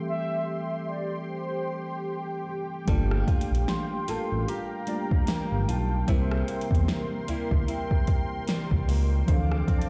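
Contemporary R&B in G dorian at 75 BPM with a lightly swung 16th feel, this moody, longing fragment opens with a clean tine electric piano, a detuned chorused analog pad and a round, horn-like synth lead carrying the melody through chorus and digital delay, before a dark, fingerpicked flamenco guitar with its own delay, an up-front sawtooth synth bass with vibrato, and a produced electronic drum kit (soft kick, fat snare, metallic hats, rim clicks) roughened by vintage 12-bit sampler grit all arrive at 2.9 s, joined at 3.3 s by a very faint felt-muted upright piano with audible action noise, the whole mix heard as if played through a big sound system in a bare stone room.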